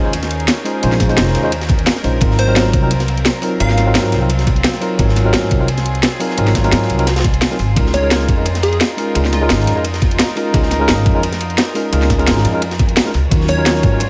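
Set in a studio reverb, this lush, soulful liquid drum and bass piece at 173 BPM is built on an up-front woody upright bass and a clean tine electric piano with medium tremolo and dub echo, carrying chords that move from Bbm11 through Ab13 and Db69 to Ebm9. An overdriven drum and bass kit with a cracking snare and bright hats drives the groove alongside a gritty, thumpy electronic kick that enters at 1.0 s, while a dark, crunchy breakbeat kit sits behind them and a reedy chamber string section pulses with sidechain pumping in the background. A punchy, detuned square-wave unison lead with phaser and dub echo adds catchy phrases from 2.4 s and 7.9 s.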